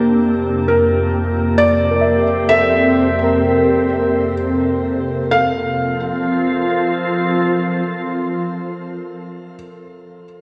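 A cassette-tape haze and a wet concert-hall reverb frame this luminous, peaceful ambient excerpt in F major at 65 BPM in 3/4, where a glassy, ethereal FM pad holds up-front sustained chords moving from C7/F to Fmaj7 at 5.3 seconds, muted, dark felt-like synth keys pick out chorused arpeggios with tape echo, a calm organ-like sine drone hums underneath, and a soft, intimate felt-muted upright piano enters at 0.7 seconds with a mellow melody glittering in shimmer reverb.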